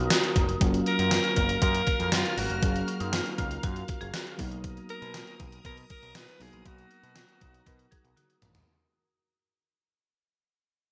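Glossy and uplifting, this 1980s-style pop excerpt fades out across its whole length, with a raspy, gritty alto saxophone carrying the up-front melody from 0.9 seconds, its scooped notes and vibrato trailed by digital delay. Beneath it, a mellow, round FM electric piano with chorus, a sweeping, detuned sawtooth pad with a resonant filter swell, and a woody marimba struck with hard mallets in the background fill out the sustained chords and second line. A growling, overdriven picked electric bass and a thumpy, gated digital drum machine with a big gated-reverb snare drive the bright, plate-reverbed mix, ending on a drum fill at 8.2 seconds.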